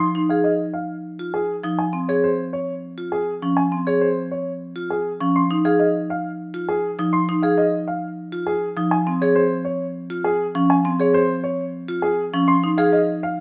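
Propulsive and bright, this minimalist classical pattern piece at 101 BPM in 3/4 and Ab major, cut from a longer work, places a worn, long-sustaining baby grand piano melody up front over percussive, boxy hard-mallet marimba accompaniment and metallic, ringing vibraphone arpeggios with the motor off, as the harmony shifts between Ab and Db in a dark, warm production with moderate stone-room reverb.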